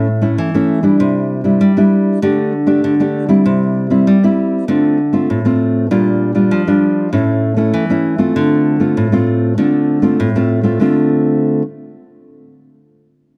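A solo nylon-string guitar carries this short samba excerpt, cut from a longer piece, at 98 BPM in a straight 4/4, set in D minor with a bittersweet, yearning mood. The thumb-plucked, classical-toned guitar sits up front, ranging from A2 to G4 and sounding acoustic and warm under light studio reverb. Its harmony moves from A through Cadd9, Gsus2/D and C to Dm7, then Bb6 and back through A to Dm7. The recording is dry and close in a 1970s studio style. The opening section gives way to a new passage at 10.8 seconds, and the guitar stops at 11.6 seconds.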